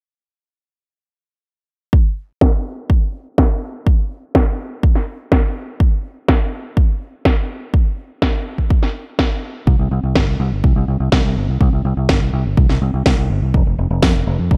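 The rhythm arrives at 1.9 seconds as a punchy, layered electronic kick drum in a straight 4/4 at 124 BPM, joined at 2.4 seconds by a cracking electronic snare shaded by a low-pass filter. This is a playful, sunny slice of Italo disco, cut from a longer piece, with a filter sweep running across the drums throughout its single section. Both drum parts sit up front with a produced, electronic polish. At 9.7 seconds a fingered electric bass enters, dark and round with a direct, amped tone, moving between F1 and F2 and trailed by tape echo. A light reverb gives the short passage a touch of space as it carries through to 14.6 seconds.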